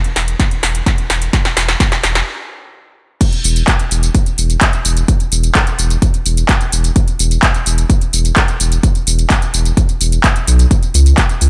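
A dry, up-front mix with little reverb opens this triumphant, uplifting fragment of festival progressive house, cut from a longer piece and set in a straight 4/4. A big-room dance drum kit starts at 0.0 s with a fill of crash, handclaps, hi-hat, punchy snare and tambourine, its metallic hats and the rest of its parts thinned by high-pass filtering during the build-up. A saturated sub bass joins at 0.2 s, deep, thick and sine-like with a fast attack and sustained notes, pumping against the sidechain from E1 to C#2. A layered electronic kick enters at 0.4 s and hits with a tape-tinged punch, re-recorded in a small room and placed squarely at the front. After a brief stop, the drop lands at 3.2 s.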